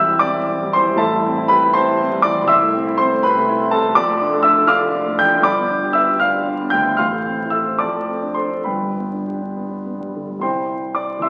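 A romantic classical character piece for solo piano in C major, lyrical and warm, flowing in a rubato 6/8 at roughly 66-84 BPM counted in dotted quarters. A warm concert grand plays alone from 0.0 to 11.3 s, reaching from E1 up to G6, its deep bass and natural, up-front tone moving through Am7, Dm/F and G before settling on C at 10.4 s. The piano sits in a wet recital-hall reverb and carries the crackle of a very old 78 rpm record, a short passage cut from a longer work.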